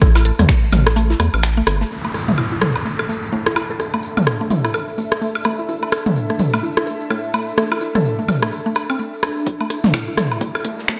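A swung 4/4 groove at 127 BPM drives this cool, sparse minimal techno, built from a punchy, tape-warm electronic kick up front, a punchy analog drum machine's finger snaps and hi-hats, a very quiet, dry 70s kit with a fat snare, an up-front organic electronic kit of rim clicks, toms and woodblock under dub echo, and a jingly, bright tambourine throughout. A woody, round mallet-like synth pluck riff with chorus and digital delay and a rubbery, hollow square bass both pump with sidechain; by 1.9 seconds the kick, drum machine and 70s kit have dropped out as a downlifter and riser sweep in. From 2.8 seconds an ethereal pad with phaser fills the space, joined a moment later by a tense, swarming drone, and at 9.5 seconds the drums return for a build-up with a filter sweep.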